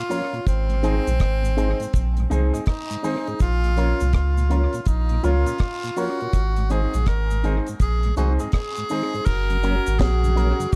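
Laid-back and serious, this roots reggae excerpt moves at 82 BPM in 4/4 with a swung sixteenth-note feel, cut from a longer piece. An edgy tenor saxophone carries the melody with light vibrato, soaked in tape echo and plate reverb, over a mellow tonewheel organ turning through chorus vibrato and a slow rotary speaker. A bright, twangy electric guitar with an envelope filter sits in the background, while a dark concert grand piano adds stabs and a deep, round sine sub bass, entering at 0.5 seconds, sits up front beside a dry, acoustic reggae drum kit with a high-tuned snare, tight kick, hi-hat, rim click and crash cymbal. Cabasa and guiro add quiet texture from a live room, and the chords move from Ab to Bbm and back before shifting to Gb at 9.3 seconds, where a punchy, close-miked trombone joins as a second line. The overall production is dark, with little reverb in the room.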